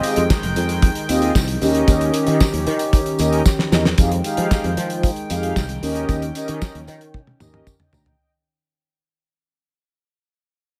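Slick and funky, this short cut from a longer early-eighties boogie funk piece moves at a straight 114 BPM in 4/4, alternating between Fm9 and Eb7. A damped 70s acoustic drum kit sits up front with a fat snare, tight kick, hi-hat and toms, dry in character yet framed by gated reverb, and it plays fills at 3.5 seconds and again near the close. A growly, direct fretless electric bass with ensemble chorus enters just after the start and sustains its notes up front beneath the kit. Mellow synth brass carries the accompaniment with a round, dark sawtooth tone, soft attack and a filter sweep, while a shimmering, retro pulse-width pad with chorus holds slow-blooming chords with a long release behind it. A jingly tambourine rings in the background of the small room ambience, and from 4.0 seconds the second section fades out to the end.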